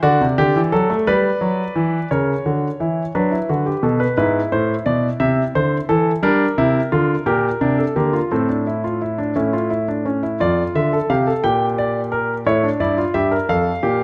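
Lively and joyful, this classical, baroque-style three-part fugue for solo grand piano moves at 58 beats per minute in a straight 6/8, taken from a longer piece and settling into D minor from 6.2 s. The concert grand sounds intimate and polished, with deep bass, long sustain and audible action noise, placed up front by close, detailed microphones within a moderate recital hall reverb. Its harmony moves through a series of shifting chords, passing an Asus4 on the way to an A chord at 9.4 s, before closing on a Dm/F to A7 cadence and a final Fadd9 at 13.5 s.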